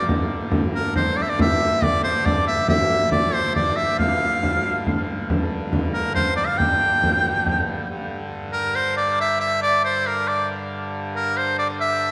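A medieval dance in 3/4 at 138 BPM and G dorian, this short cut from a longer piece feels ancient and driving. An edgy shawm carries the folk-style melody up front with vibrato, soloing over a low drone from a pipe organ on its brassy, bright trumpet stop, whose baroque voicing has an audible chiff. A deep frame drum plays from the start until about 7.8 seconds, large and acoustic with a distant, roomy character, and the whole performance sits in a wet church reverb.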